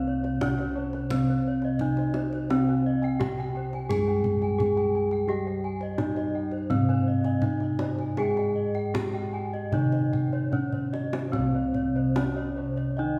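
Stately and hypnotic, this short cut from a longer Javanese gamelan piece moves in a straight 4/4 at 73-86 BPM in C pelog. An up-front bronze metallophone struck with a wooden mallet carries the melody over a mellow, soft metallophone accompaniment played with padded disc mallets. Higher arpeggios come from round-toned bossed gongs and a shimmering, pair-tuned metallophone, while vintage, band-limited bossed gongs hold the bass in the background; a tight kendang runs through nearly the whole excerpt, adding a drum fill from 10.7 to 11.3 s before a new section begins, all within a moderate scoring-stage reverb.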